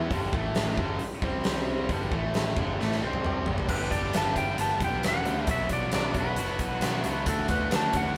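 Classic rock at 134 BPM with a confident, swaggering strut, built on a tight, double-tracked distorted guitar riff and a round, dark picked bass, driven by a huge arena kit with a fat snare, punchy kick and bright cymbals that closes its opening stretch with a fill from 2.8 to 3.7 seconds, where a clean, twangy lap steel slides in with the melody over chords moving from G to Bm to D, the whole band sounding live together in a moderately reverberant stone room.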